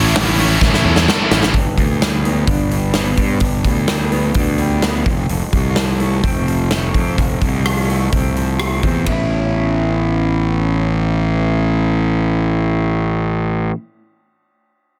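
A straight 4/4 pulse at 127 BPM drives this bittersweet, cathartic alternative rock fragment in A mixolydian, opening on a crushing A chord where three bright, high-gain distorted guitars (one scooped, one tight and double-tracked) hammer a riff in the background while a big, up-front acoustic kit with punchy kick, bright cymbals and a clipped snare plays a fill. At 1.5 s the heavy guitars drop away and a dark, lo-fi guitar through a small old amp takes over with compressed, slightly broken-up chorused arpeggios over G and then F. Underneath, a growly fuzz bass holds the low end throughout. At 9.1 s the arpeggios and bass settle onto an Aadd9, and the drums stop shortly after at 9.2 s, all in a small, lightly reverberant room under a dense, heavily limited master.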